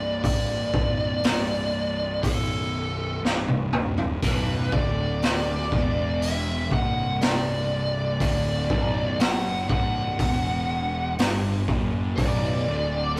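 A fuzz-distorted lead guitar carries a dark, compressed melody over a growly, overdriven picked bass from the start of this hypnotic, ominous stoner and doom metal excerpt in B phrygian at 60 BPM, as a raw garage drum kit with a boomy kick and high-tuned snare enters at 0.2 seconds, plays a fill from 3.2 to 4.2 seconds, and ushers in a double-tracked fuzz guitar riff at 4.2 seconds, all in a rough rehearsal-room recording with light reverb.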